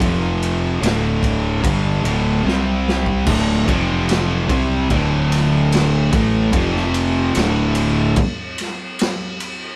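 Heavy and sludgy, this cut from a longer stoner and doom metal piece has a band playing live in one room, with three guitars grinding out a low, power-chord riff. Two dark, picked thick fuzz guitars carry it, one sitting further back, while a double-tracked distorted electric guitar adds a warm layer in the background. Beneath them, a growly, punchy fingered bass with fuzz and overdrive holds the bottom, and an up-front raw garage drum kit, gritty and saturated with a boomy kick and a rolled-off top, plays a fill from 2.5 to 3.3 seconds and carries on alone after the strings stop near 8.2 seconds.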